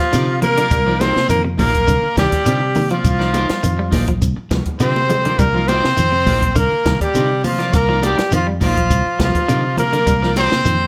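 A breathy, whispered trumpet carries the melody up front over a growling, raspy tenor saxophone line and a tremolo-shaded electric guitar playing arpeggios, setting a driving, hypnotic afrobeat groove in C minor at 102 BPM. A second slightly broken-up, twangy guitar adds stabs through a lush chorus, while a round, foam-muted fingered bass anchors the Cm11 harmony beneath a dry cocktail drum kit with a high-tuned snare and punchy kick. A grainy shekere and bright, distant congas sit in the background, and the kit plays a fill at 5.0 seconds in this excerpt cut from a longer piece, all within a light reverb.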